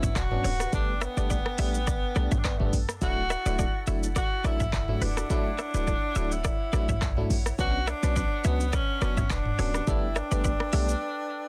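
A dense, heavily limited modern mix with very little reverb carries this breezy, joyful afrobeats excerpt, cut from a longer piece, with a lightly swung sixteenth-note feel over Dadd9 and Gadd9 chords. Up front, an electronic afro-pop kit with a deep kick, metallic hats, handclaps, rim clicks, shaker and toms drives alongside a punchy, tight 808-style bass. A biting, percussive FM electric piano with chorus and a twangy, clean direct guitar riff with analog chorus and tape echo fill out the groove beneath a distant, roomy tenor saxophone melody with light vibrato, while a breathy, crisp small flute group holds sustained chords in the background and, with the sax, rings on alone through a brief break from 11.0 to 11.5 seconds.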